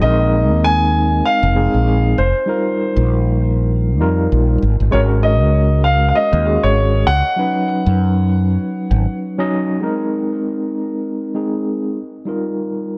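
A dark, mellow baby grand piano carries the melody over a gritty, barky tine electric piano with fast tremolo and a round, punchy fretless bass, all entering together at the start of this relaxed sunset chillout piece at 98 BPM in Bb minor, moving through suspended ninth chords with a gentle sixteenth-note swing. The piano's smooth, vintage tone trails tape echo, while the overdriven electric piano runs through a combo amp with a low-pass filter sweep and digital delay. The bass and grand piano drop out around 9 seconds, leaving the electric piano alone until it stops at 13.0 seconds in this dark, warm production with light studio reverb.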